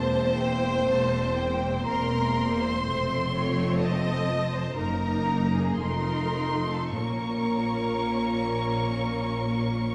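Rubato 4/4 at a slow 44 to 63 BPM carries this solemn, elegiac string orchestra passage in Bb minor, a brief cut from a longer romantic movement lasting 9.9 seconds. High violins sing a soft-attacked, expressive melody with vibrato above a focused second violin line, while violas add portamento-tinged accompaniment, lush close cellos anchor the bass, and smooth, even double basses lie beneath. Harmonies move from C7/E through F, Ebm/Gb and F7 to settle on Bbm at 7.0 seconds, all bathed in a wet stone-room reverb.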